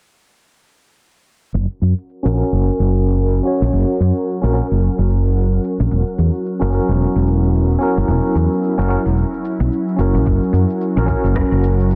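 A dense, heavily limited master steeped in lush hall reverb carries this hypnotic organic downtempo excerpt at 110 BPM, its swung 16ths resting on F# and Esus2 chords under a broad filter sweep. A round, punchy fretless bass and a layered, overdriven electronic shaker and rim click enter at 1.5 seconds, both swept by the filter, soon joined by a barky, gritty tine electric piano with medium tremolo and tape echo and an ethereal, detuned pad with ensemble chorus; bass, piano and pad all pump to the sidechain. A soft, tape-toned electronic kick sits in the background from 10.3 seconds.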